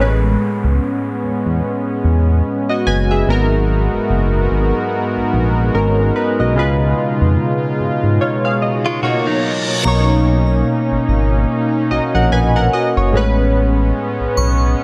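Set in a light reverb, this short cut from a longer contemporary R&B piece has a tender, romantic mood and a gently swung feel. Round, detuned analog keys carry the accompaniment with chorus, phaser and tremolo. Alongside them, a soft-attack pad holds smooth sustained chords, and a dark gliding synth bass sits up front with portamento. A quiet electronic downlifter and reverse cymbal run through the opening, with the cymbal leading into the change at 9.9 seconds. Just before that, from 8.9 seconds, a clean, direct-recorded electric guitar plays brief picked arpeggios with vibrato and delay. The second part brings a glassy, crystalline FM bell in a high register, its chorus and delay adding sparkle. Across the whole cut, the chords move from Amaj9 through G#m9 and C#7 to Bmaj9 and back to Amaj9.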